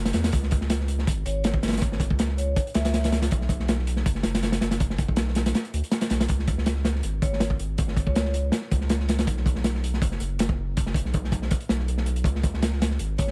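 A deep, saturated sub bass opens this raw, frenetic drum and bass and jungle excerpt at 161 BPM in C# minor with a light swing, joined almost at once by an up-front, gritty breakbeat kit with a tight kick and a dark, rolled-off top, while a metallic, ringing vibraphone with dub echo drifts in the background at 1.3 and 7.2 seconds over a bed of vinyl crackle.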